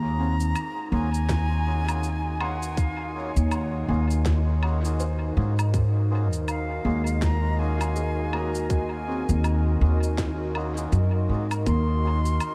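A dreamy mix soaked in a huge ambient reverb gives this hazy, spacious ambient dub excerpt its atmosphere, set over a single Ebm11 chord with a loose swing in 4/4. Up front, a thumpy, woody upright bass plays pizzicato on steel strings, joined at 1.3 seconds by a tight, tape-warmed electronic kick. A dark, warbling pad holds nostalgic sustained chords with a slow attack, long release, chorus and its own reverb. An airy silver concert flute carries the melody with unsteady vibrato and tongued notes, trailed by delay. A very quiet felt-muted upright piano adds soft, intimate arpeggios with audible action noise. Deep in the background, a reedy, breathy melodica adds nasal stabs, and an electronic shaker, woodblock and woody snare, all re-recorded in a small room, scatter through dub echo.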